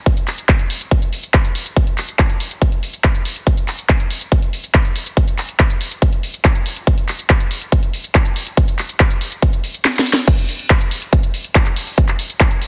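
The sound is dense and heavily limited, a modern master set in a digital ambience. This is a driving, psychedelic trance cut taken from a longer piece, moving at 141 BPM in a straight 4/4. A punchy, layered electronic kick drum sits up front with studio reverb. Beside it, a produced drum and bass drum kit brings a cracking snare, handclaps, hi-hat and crash cymbal, also placed up front with its own studio reverb. At 9.8 seconds the kick drops out while a drum fill plays, and at 10.3 seconds the drop arrives as the kick returns and the groove pushes on through to the end.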